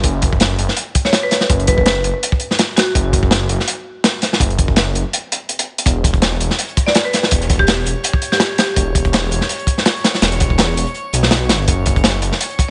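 Frenetic yet atmospheric, this drum and bass cut in a jungle vein rides a swung, crunchy breakbeat kit whose gritty, saturated hi-hat, tight kick and snare sit up front from the start. Beneath it, a thick, detuned saw bass growls low and menacing, its beating tone sustained and heavy through to 12.3 seconds. A woody marimba struck with hard mallets plays percussive phrases with a vintage, band-limited colour, trailing dub echo behind each one. After a brief break at 5.1 seconds, a second, darker and very quiet breakbeat layer of hi-hat and snare joins in, and a glassy texture of drifting overtones fades in behind, calm and chorused with its own reverb. The overall sound is dry and dark at the top, with the drums and bass dominating the mix.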